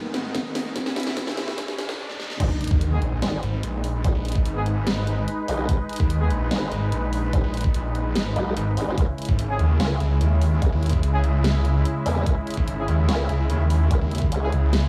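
Bright, lush supersaw chords pumping under sidechain and a low-pass filter open this menacing, heavy wobble dubstep piece at 146 BPM in half-time G# minor, with a background riser and impact, a drum fill from the electronic kit and a tape-warm, knocking kick up front. At 2.4 seconds the drop lands: a chorused, formant-swept wobble bass, joined at 2.7 seconds by a snarling, growling distorted saw bass, sits up front over a huge snare, crash and hi-hat, as the harmony moves between G#m and C#m. From 2.9 seconds, a classical-style brass section adds light-vibrato stabs in the background, bathed in diffuse ambient delay.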